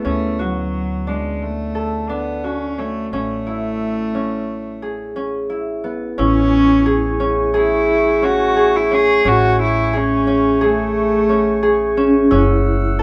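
Contemporary chamber music in 9/8 at 176 BPM in A major, hopeful yet restless, with a reedy, gut-string bowed cello carrying the melody up front over ringing fingerpicked concert harp arpeggios and a dark, woody pizzicato upright bass, joined at 6.2 s by a smooth vibraphone second line with fast motor vibrato in the background and distant, roomy sustained chords from a tight woodwind section, set in light reverb as the harmony moves from Dmaj7 to Amaj7 and arrives on F#m7.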